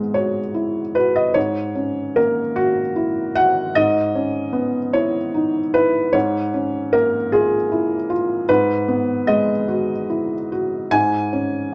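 Neoclassical minimalist piano in G# minor, this brief excerpt moves at a slow 50 BPM in 6/8, played with a rubato feel that lets the pulse breathe. A felt-muted upright piano plays alone from 0.0 to 11.7 s, spanning G#2 to G#5 with a soft, mellow, intimate tone that sits up front. The harmony circles over a G# foundation, passing from G#m7 through F#/G#, C#m7/G# and A#m7/G# before returning to G#m7 and dissolving out of any defined chord at 10.9 s. A moderate stone room reverb gives the piano a natural sense of space around its hushed attack. The mood is reflective and wistful, like a quiet passage lifted from a longer piece.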